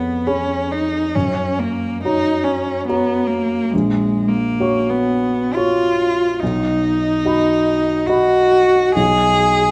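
Lyrical and tender, this brief romantic classical duo in a rubato three-beat feel sets a rich bowed cello, singing the melody with vibrato up front, over a dark, mellow grand piano whose intimate accompaniment, with its long sustain and audible action noise, rests in a moderate recital hall reverb.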